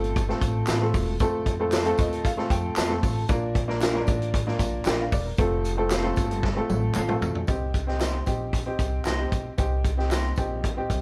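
Joyful and uplifting, this short cut of uptempo 1960s-style soul moves at 115 BPM in a straight 4/4, centred on F mixolydian with the tuning set slightly low at A4 = 439 Hz. A clear, woody upright piano sits up front with a faintly detuned character, offering accompaniment and a fill from 1.7 to 3.3 seconds, while a thumpy pizzicato upright bass on gut strings anchors the low end. The vintage drum kit is punchy and mid-forward, with a medium-tuned snare, rolled-off top and hi-hat, kick and toms, capped by a drum fill that leads into a new section at 7.5 seconds. Tambourine and group handclaps with a tube shaker sit in the background from 0.2 seconds, and a bright, twangy electric guitar through a small old amp adds slightly broken-up, lo-fi picked stabs from 0.7 seconds. The harmony moves from F to Bb and back to F before turning to Cm, and light reverb gives the feel of a band playing live together in one room.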